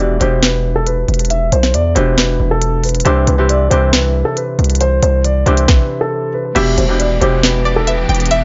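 Hard-hitting and eerie, this half-time trap cut at 137 BPM in E minor sets a dark, boxy concert grand piano melody with digital delay over a ringing Celtic harp, a saturated, distorted 808-style bass and an up-front trap kit with a hard-clipped kick, sharp snare and crisp hats. After a stop at 5.7 seconds, the track resumes at 6.6 seconds with a twangy, bright string-like resonator pluck carrying a second line through chorus, phaser and delay. A lush, biting symphonic string section holds sustained chords beneath it, all within a studio ambience.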